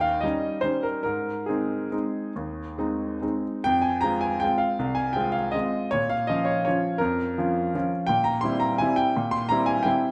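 Graceful and sparkling, this classical piano waltz moves in a lilting three with a flexible, rubato feel. A single baby grand carries the piece alone from start to finish, its tone bright and brilliant, sitting up front and intimate, with the natural sound of its action audible beneath the notes. The playing spans from the low bass to the upper treble. After a brief opening in a major key, the music turns toward a minor colour at 3.7 seconds. A moderate recital hall reverb lends the piano a sense of space around its close sound, and the recording is a short portion cut from a longer piece.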